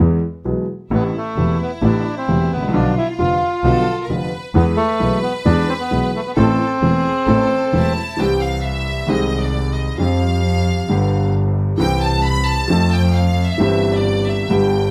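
A clear, smooth grand piano and a focused, bowed double bass open this sultry, dramatic tango excerpt in A harmonic minor, moving at 132 BPM in 4/4 with a rubato feel. From 0.9 seconds a reedy, vintage bandoneon carries the melody up front with plate reverb, while a bright, lush violin section plays a distant second line with intense vibrato. The bandoneon stops at 7.9 seconds, and at 8.2 seconds the music turns to C major as the violin section steps forward in a solo passage, all within a moderate studio room.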